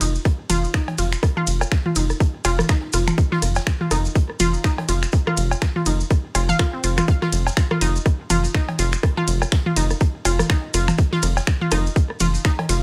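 A tight, layered electronic kick sits up front in this cool, sparse minimal techno excerpt at 123 BPM with a 16th-note swing, entering at 0.3 s together with a booming analog drum machine whose cowbell, rim click, toms and woodblock carry a digital delay. A rubbery, hollow square bass holds F1 beneath a juicy, squelchy resonant blip pluck riff ranging from C4 to F5, both with sidechain pumping, with chorus and delay on the pluck. Clicky, tape-warm finger snaps, hi-hat and ride from a minimal click kit, grainy maracas in the background, and a very quiet acoustic big-band kit's hi-hat and snare round out a dry mix over an F5 chord.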